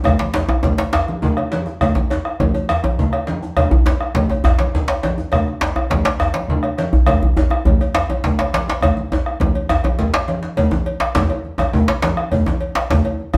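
A rolling 12/8 pulse drives this powerful, earthy West African drum ensemble, cut from a longer piece and played live in one room with a wet studio reverb around it. A metallic, close cowbell and two medium-tuned djembes, one rattling with metal jingles and the other soft-handed, dry and up front, sit over a round, saturated bombo and ringing, low-tuned congas that carry a vintage, band-limited colour. A drum fill from 8.8 to 10.6 seconds leads into a new section that runs to the end.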